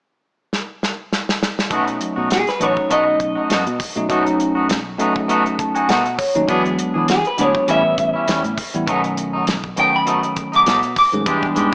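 Soulful and laid-back, this short cut of straight-eighth soul blues opens with a drum fill on a warm soul kit with a tight kick and rolled-off top, before the band drops in at 1.7 seconds over a B7 chord. A foam-muted, punchy fingered bass sits under a clean tine electric piano colored by phaser, which takes a fill of its own at 5.3 seconds, while a scooped, twangy guitar adds stabs through slapback echo. Up front, a bright, slightly broken-up lead guitar from a small old amp carries the melody through E7, A7 and back to B7, all bathed in moderate plate reverb with a small-speaker character.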